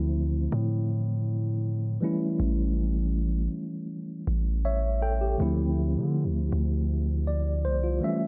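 Longing and moody, this brief contemporary R&B excerpt in D minor moves at a straight 80 BPM in 4/4, as a mellow, clean tine electric piano heard up front as through built-in speakers plays Dm7 and A7 chords with a fill from 4.3 to 5.4 seconds, over a deep, sine-like 808-style bass with a fast attack and long, decaying sustain, all set in light reverb.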